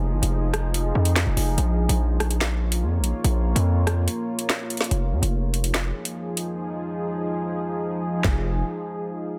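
A half-time drill beat at 144 BPM in F minor sets a tense, dark hip hop mood, with an electronic kit of hard-clipped kick, woody snare, metallic hi-hats, handclaps and rim clicks under a saturated, aggressive 808-style bass and a deep, detuned sawtooth pad with chorus and reverb moving from Fm7 to Bbm, as the track breaks at 4.1 seconds and the drums fall silent from 6.6 to 8.2 seconds in this dense, heavily limited cut from a longer piece.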